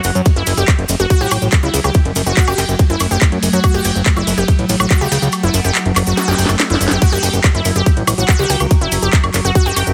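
This hypnotic, alien psychedelic trance excerpt opens on a fat, detuned sawtooth bass, a bright unison pluck riff with tape echo, an evolving wavetable pad holding sustained chords in the background, a drum and bass kit with a cracking snare and metallic hats, and a grainy cabasa. A tight, up-front electronic kick joins at 0.3 seconds in a straight 4/4 metre, and the pad and pluck pump against it through sidechain compression. The pluck is lush and wave-folded with ring modulation, decaying after each note, while the bass stays thick, nasal and saturated up front. The slow-attack pad morphs beneath them through a phaser and its own reverb. The kick drops out at 5.3 seconds, the kit plays a fill from 6.2 seconds, and the kick returns at 7.0 seconds. Light digital ambience surrounds the mix, which is heavily compressed to a radio-style sound.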